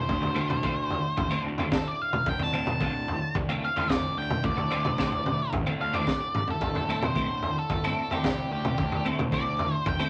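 Mysterious and hypnotic, this psychedelic rock passage, cut from a longer piece, moves in a straight 4/4 as an octave-fuzz lead guitar plays a dark, distorted solo up front throughout. A crunchy breakbeat drum kit sits forward too, with a gritty, saturated sound, a tight kick, a high-tuned snare and toms, and a rolled-off top, breaking into a drum fill between 6.1 and 6.6 seconds. A twelve-string electric guitar carries a bright, twangy, compressed riff through a rotary speaker. Beneath them, a fuzz picked electric bass adds a punchy, overdriven low end from the background, while a very quiet hand-pumped harmonium holds a reedy, nasal, breathing drone that sounds close and dry. The harmony sits on Dm7 before shifting to Am7/D at 6.6 seconds, all framed by a moderate studio ambience.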